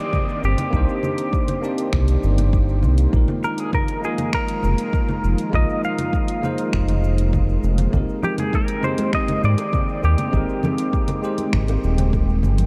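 Warm and relaxed, this sunset chillout excerpt floats in a dreamy mix soaked in huge ambient reverb, its chords moving from Cm9 to Bb7sus4 to Abmaj9. A dark, twangy clean electric guitar carries the melody through tremolo and diffuse delay, over a bell-like tine electric piano and a lush, detuned unison pad with chorus, while a very quiet downlifter sounds until 3.1 seconds. A round, up-front analog bass and a layered electronic kick anchor the groove with a deep house kit of congas, finger snaps, dark hi-hats and shaker, and soft-handed bongos and congas ring in the background from 7.9 seconds.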